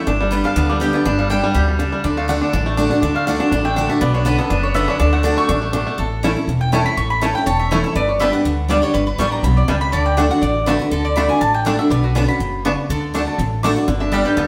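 A woody, double-strung mandolin carries the solo through this lively, joyful bluegrass passage cut from a longer piece, backed by a bright, full-bodied dreadnought guitar up front, a twangy, percussive banjo playing arpeggios, and a thumpy gut-string upright bass, while a metallic, nasal slide resonator guitar adds a second line from 6.0 s, with the whole band captured live together in a reverberant stone room.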